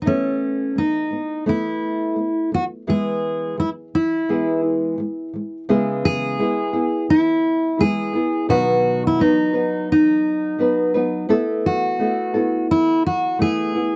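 Sixteenth notes swing gently in 4/4 at an unhurried, easy-going pace, giving this heartfelt pop passage, cut from a longer piece, a relaxed sway. A fingerpicked steel-string acoustic guitar with a full-bodied, jumbo tone carries the melody in a compact range from C#4 to G#4, sitting up front in the mix. Beneath it, a fingerpicked nylon-string guitar with a dark, small sound plays the accompaniment across a broader span from B2 to B4, also close and present. Both guitars play together for the full 14 seconds, moving from Asus2 to E in the opening section before a second section begins at 5.7 seconds and passes through C#m7 and B, returning to Asus2. The dry, close sound of a 1970s-style studio gets just a touch of light reverb, and the instruments are tuned to A4 = 436 Hz.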